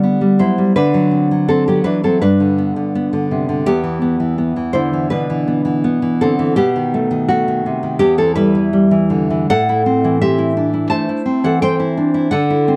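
A fingerpicked nylon-string guitar with fresh strings sits up front in this nostalgic, romantic solo classical piece, moving in a free rubato through chords such as G, D7, Em7 and B7, with light reverb and a dark, warm production in a brief 12.8-second excerpt cut from a longer work.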